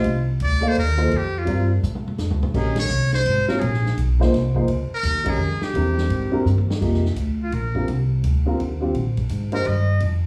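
Spiritual and searching, this modal jazz excerpt swings in 3/4 at 169 BPM, with a buzzy, breathy metal-muted trumpet carrying the melody over a dark, boxy upright piano with audible action noise, a woody, thumpy pizzicato upright bass, and a vintage drum kit of dark cymbals and punchy kick that adds fills while the whole band hits accents, all heard from further back in a reverberant studio, before the trumpet takes a solo in F dorian from 6.8 s over chords moving from Gm9 to F13sus4.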